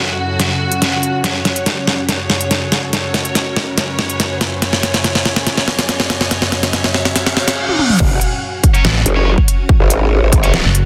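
A clear, close violin section with 12-bit sampler grit and delay opens this heavy, chaotic half-time wobble dubstep cut over an evolving, phaser-tinged wavetable pad, a blurred granular cloud pad and a background riser and reverse cymbal, while a tape-warm drum kit with a deep, soft-clipped snare and crisp hats drives the build-up until the drop at 8.0 seconds brings in a punchy electronic kick and a growling formant-filtered bass, joined moments later by double-tracked high-gain guitar stabs and a mellow, pulsing pluck wobble bass in a dense, heavily limited mix.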